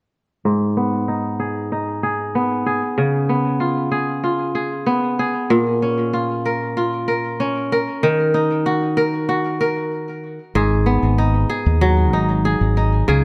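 A bright, ringing kora plays fingerpicked arpeggios through a low-pass filter sweep and digital delay in this intimate, wistful folktronica excerpt at 95 BPM in G# dorian, moving through G#m, C#7, A#m and D#m before a brief stop at 9.9 seconds, after which a round, punchy fingered electric bass with tube saturation enters up front at 10.6 seconds under a G#m7 chord, all set in a small room with light reverb.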